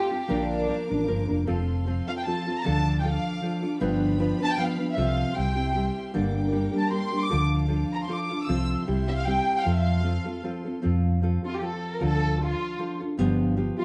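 A bowed violin section carries the melody with light vibrato and an intimate sul tasto tone over a fingerpicked, full-bodied nylon-string guitar with audible finger squeak, while a second, lush and biting violin section holds sustained chords until 10.8 s and a dark, round, punchy hollow-body electric bass joins at 0.3 s, giving this proud, romantic mariachi excerpt in F major a swung 3/4 lilt at 154 BPM as the band plays live together in a stone room with a wet reverb.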